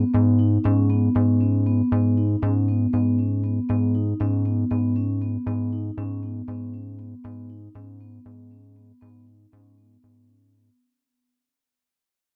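Vibraphone arpeggios and a rubbery bass open this short cut from a longer progressive instrumental piece. It is set in G# minor at 236 BPM counted in eighths, in a straight 7/8 that feels tense and intricate. The vibraphone is played with soft mallets and its motor off, giving a metallic, ringing tone as its arpeggios stay between B3 and D#4, trailed by a digital delay. Beneath it, the square-wave bass sits up front on G#2, hollow and bouncy, with a resonant filter pluck and a fast attack. The harmony rests on a single G#m chord, framed by light reverb and a dark production, and the passage fades out across its 10.8 seconds.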